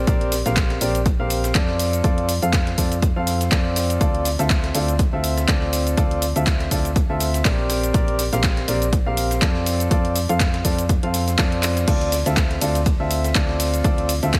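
A clear, open concert grand piano and a round, mellow FM bass start together, the piano playing an up-front riff between C4 and F5 with delay and a sidechain pump that the bass shares. This is bittersweet, soulful piano house in D minor at 122 BPM, with a light 16th-note swing and chords cycling through Bb69, F6 and Dm7. From 0.1 seconds the drums join: an overdriven, punchy electronic kick sits at the front, while a layered house kit adds handclaps, shaker, hi-hat, ride and crash in a small room. Beneath them, a gritty, sampler-style breakbeat kit with a high-tuned snare stays very quiet. A drum fill arrives at 11.6 seconds, and the whole passage, cut from a longer track, carries a heavily compressed, radio-like digital ambience.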